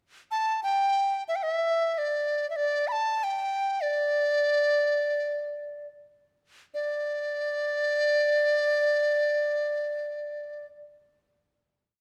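Heard in a reverberant recital hall, this complete piece of Chinese traditional chamber music features a single large dizi, close-miked and up front, its bamboo tone bright and reedy with a buzzing membrane and a crisp attack. In free time and a graceful, pastoral mood, the solo dizi enters at 0.3 seconds with a brief pickup, then shapes an ornamented modal melody between D5 and B5. It slows from 3.8 seconds and comes to rest on a long final note held from 6.7 seconds.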